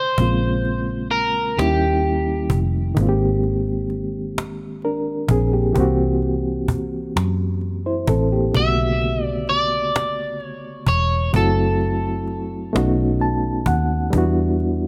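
In a slow, straight six-eight lilt, this yearning, sultry R&B excerpt rests on a woody, close cajon with faint snares, a dark, round, foam-muted electric bass and a reedy, bright electric piano shimmering with fast tremolo, while a slightly broken-up electric guitar bathed in lush chorus carries the melody at the start, returns at 8.6 seconds and is joined by an electric piano fill at 12.7 seconds before dropping out at 13.6 seconds, all in a dry room with a faint mains hum.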